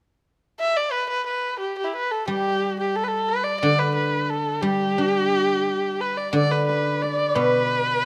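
A dark, woody erhu carries the melody from 0.6 seconds, a single bowed voice up front with vibrato and portamento, in this graceful, pastoral Chinese traditional chamber piece cut from a longer work. It moves rubato at around 88 BPM in 2/4, in G gong mode. A mellow, silvery guzheng played with fingerpicks enters at 2.3 seconds as ringing accompaniment, and a shimmering hammered dulcimer adds a second line from 6.3 seconds, all caught by close, detailed microphones in light reverb.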